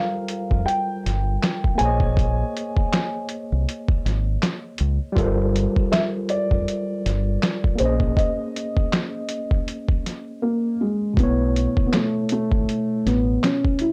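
A felt-muted upright piano carries the melody from the very start, its soft, boxy, intimate tone sitting up front, while a worn, slightly out-of-tune tine electric piano plays the accompaniment through its built-in speakers with a touch of overdrive. This is a nostalgic, melancholic lo-fi hip hop excerpt at 80 BPM in 4/4, with a lazy swing on the sixteenths. A sampler-style drum kit joins at 0.3 seconds, compressed, pitched down and muffled, with a thumpy kick, medium-tuned snare, hi-hat and handclaps pushed up front with grit. A deep dub fingered electric bass enters at 0.5 seconds, dark and round, moving between Gm11 and A#m11 harmonies. A break arrives at 8.2 seconds and falls into a silent gap before a new section opens at 11.2 seconds on a B9sus4 chord. The dry, gritty sound carries the character of cassette tape, with only light reverb around the parts.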